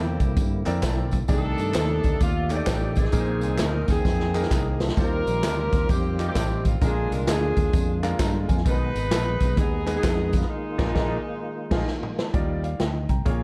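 A tight saxophone section opens this uptempo gospel excerpt in Eb major, carrying a jubilant yet reverent melody over a clear baby grand piano with audible action noise, a very quiet organ chording through a rotary speaker, and a round, dark fingered electric bass. At 0.2 seconds a swinging big-band drum kit joins up front, with boomy kick and dark cymbals in a roomy studio space, alongside a live-room tambourine, tube shaker and group handclaps. The groove moves at 130 BPM in 4/4 with a swung eighth-note feel. The lightly overdriven organ adds key click and percussive bite, while the punchy, distant horns sing with light vibrato. Drum and piano fills dot the passage, the later ones falling within a band accent, and the saxophones drop out at 11.8 seconds as the harmony settles on an Ebmaj9 at 12.3 seconds. Light reverb wraps the mix in a dark production.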